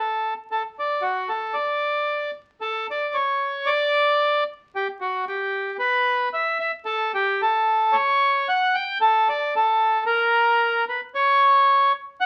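Jolly and festive, this brief cut from a longer alpine folk piece is carried entirely by a solo accordion. The music sits in D major at 112 BPM in 2/4, yet the feel is rubato, so the pulse breathes freely. The reedy, dry-tuned accordion stays up front with a band-limited tone, moving between F#4 and G5, with a tuning reference of A4 = 441 Hz. An opening phrase is restated from 2.6 seconds, and a new idea arrives at 11.1 seconds before the recording cuts off at 12.3 seconds. The sound carries the character of a very old 78 rpm record, with vinyl crackle and a moderate small-room reverb.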